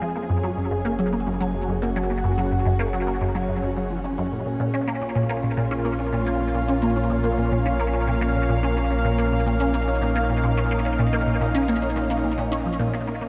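This short passage from a longer piece of ambient, sequencer-driven space music opens with a squelchy, resonant blip pluck riff, phased and echoed up front, over a thick, warbling detuned pad of sustained chords and a round, deep analog bass, moving at 108 BPM in a straight 4/4 in Bb minor. The mood is mysterious and expansive, with the harmony shifting from Gbsus2 to Bbm at 4.6 seconds. The pad and pluck both carry shimmer reverb, and the whole mix sits in a huge ambient space with a long 8.1-second decay.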